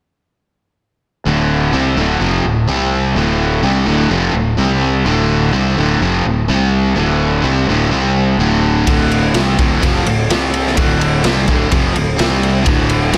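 A straight 4/4 pulse at 126 BPM drives this heavy hard rock passage in D minor, cut from a longer piece. From 1.3 s, a scooped, distorted electric guitar with slapback echo and an up-front, overdriven semi-hollow guitar with spring reverb play the riff over Dm and C5 chords, while a growly, fuzz-toned fingered bass holds the low end. At 8.9 s a raw, gritty garage drum kit enters with a punchy kick, medium-tuned snare and ride cymbal, all set in a big arena sound with moderate stage reverb.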